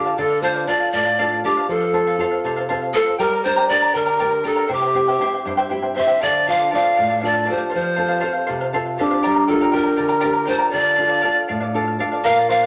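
Festive and earthy, this Andean folk excerpt in D minor moves at 80 BPM in a straight 6/8, with an up-front, breathy bamboo pan flute carrying the tongued, chiffy melody over a shimmering, double-strung charango and a full-bodied, fingerpicked nylon-string guitar whose finger squeaks can be heard, while a ringing, thumb-plucked concert harp adds a second line from 6.0 seconds and a grainy egg shaker slips in at 12.2 seconds, all set in a large studio reverb.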